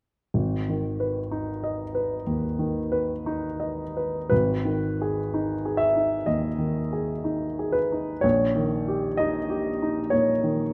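Rubato phrasing in a slow 4/4 around 55-64 BPM shapes this brooding, bittersweet romantic character piece for solo grand piano in G# minor, where the intimate, up-front piano sounds warm and natural with its action noise clearly audible, spans G#1 to E5 from 0.3 s to 10.7 s, and rests on G# minor before turning to D#7 over A# at 8.2 s, all set in a wet recital hall reverb.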